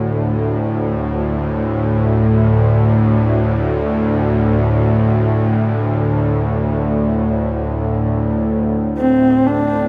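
This dark ambient drone drifts in free time with a cavernous, unsettling mood, heard as a short cut from a longer piece. A low, string-like drone sits up front from the start, resting on a D5 chord in the low register; its detuned, sawtooth edge, noise layer and vibrato give it a tense, grainy body, with a slow attack and long sustained tones soaked in its own reverb. The music shifts into a new section at 8.5 seconds. At 9.0 seconds a single horsehead fiddle enters up front, playing a brief melody in its middle register. The fiddle is bowed on horsehair strings and sounds husky and boxy, with vibrato and portamento. A cathedral-sized reverb with a long tail surrounds the recording, deepening its hollow, shadowy atmosphere.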